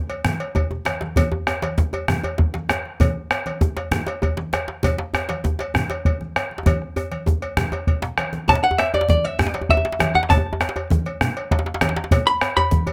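Festive and earthy, this short cut from a longer West African drum ensemble piece rolls along at 132 BPM in a straight 12/8, centered on D major pentatonic. Congas with a thick, damped, low-tuned skin and a compressed, saturated metallic cowbell start almost at once, joined by a round, up-front bombo and two djembes, one deep with metal rattles and soft hands, the other tight and cracking. Drum fills mark the opening moments from 0.7 to 1.2 seconds and again from 6.7 to 8.5 seconds, leading into the second section. At 8.5 seconds a vintage hollow-body jazz guitar enters up front with a dark, clean, picked electric tone, carrying the melody between D5 and B5 over the drums. Light reverb and a rough home-demo mix give the whole a homemade character.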